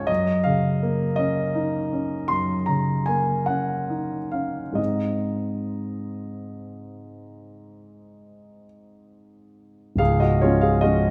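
A concert grand piano plays alone from the first moment, its deep bass and up-front presence set in a moderate recital hall reverb, opening a dreamy, serene romantic nocturne in 12/8 that moves with rubato at about 44-55 BPM by the dotted quarter. The harmony rests on Ebm7/Gb before shifting to Ab at 4.8 seconds. At 10.0 seconds a new section begins on Db, and this short cut from a longer piece ends at 11.1 seconds, with the piano tuned to A4 = 439 Hz.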